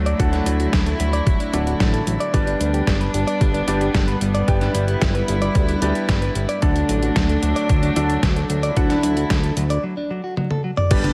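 Danceable and romantic, this italo disco excerpt rides a thumpy electronic kick and a detuned 8-bit drum machine with a tape-warmed snare, beneath a fat, wave-folded analog bass with a filter sweep, bright picked arpeggios from a clean, direct electric guitar and brilliant baby grand piano stabs, both with tape echo, plus distant, reedy chamber strings holding sustained chords over D and G, the mix set in light digital ambience with vinyl crackle before a break at 9.8 s and a drum fill at 10.4 s.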